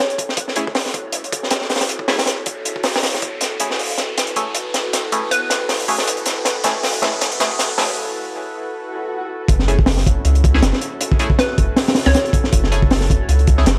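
A crunchy, saturated breakbeat kit with a punchy kick and high-tuned snare drives this raw, dark drum and bass excerpt at 158 BPM in F# minor, under a warbly, nostalgic tape-like pad, a nasal band-passed chord stab with phaser and dub echo, a hollow square pluck with chorus in the background and a faint riser and swell building through a drum fill and break until a deep, round sub bass drops in at 9.5 seconds.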